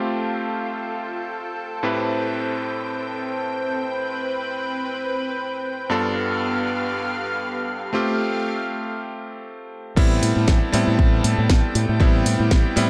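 Nu-disco at 118 BPM in A minor with a sensual, groovy swing, this short cut opens on a bright, clangy electric grand piano playing filtered, delayed accompaniment over a lush, detuned unison pad whose soft-attack chords carry chorus, 12-bit grit and sidechain pumping, moving through Fadd9, Am7 and G7. After a break at 9.0 s, the drop lands at 10.0 s on Am7, bringing in a punchy layered electronic kick, a house kit with cracking snare, hi-hat and crash, and a tube-saturated fingered bass with an envelope filter. The echo-heavy mix sits in moderate spring reverb and digital ambience.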